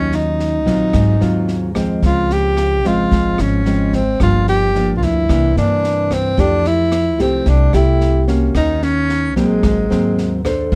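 A mellow, breathy tenor saxophone with light vibrato, subtone and scooped notes carries the melody up front over a thumb-plucked classical nylon-string guitar and a woody, thumpy pizzicato upright bass, joined at 0.1 seconds by a quieter open jazz kit with boomy kick, rim click and high-tuned snare, giving this dark, dry bossa nova fragment from a longer piece a sophisticated, romantic air as the chords move from Ebm9 through Fmaj9 to Ab9.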